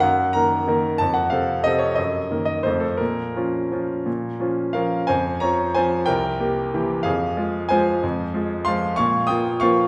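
A 3/4 waltz at 166-197 BPM, played with a free, rubato feel, this short classical cut from a longer piece has an elegant, wistful mood. A bright, brilliant concert grand plays solo from C2 to Eb6, with deep bass in its low register, opening in Bb minor before moving into F minor at 5.1 s over harmonies that turn through Fm and C7. The piano is heard from further back in a recital hall whose wet reverb lingers around each phrase.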